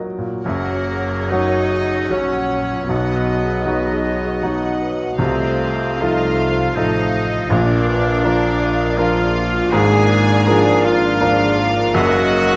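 An intimate, up-front baby grand piano carries the melody through this brooding, tragic excerpt of a romantic movement for piano and orchestra, its action noise audible as it moves in a rubato 3/4 over a dark harmonic path that settles on Ebm/Gb. A punchy cor anglais and an airy, very quiet flute ensemble add second lines, and a mellow, vintage bassoon murmurs accompaniment in the background. From 0.4 s a sul tasto violin section, a woody, lush viola section, soft-attack cellos, double basses with light vibrato and close-miked French horns holding sustained chords fill out the orchestra, joined at 0.5 s by a second sul tasto violin section. Very quiet timpani struck with hard mallets enter briefly at 7.5 s, all within a wet recital-hall reverb.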